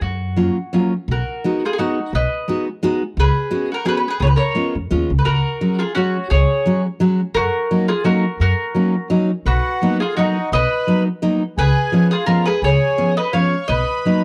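A round, double-strung mandolin carries the melody up front from the very start of this nostalgic, whirling musette waltz, cut from a longer piece and moving at 171 BPM in 3/4 with a gentle swing on the eighth notes. Beneath it, a woody, thumpy upright bass with gut strings plays pizzicato in a dark low register, while a picked dreadnought steel-string guitar fills in the accompaniment with a warm, close presence. At 9.5 seconds a reedy, smooth accordion enters with a rich second line, sitting further back in the blend. The harmony drifts through lush colours such as F#maj7, B6, C#7sus4 and Bmaj7, giving the dance a wistful, sentimental glow. The sound is dry and intimate, a close 1970s-style studio recording with a touch of small-room ambience.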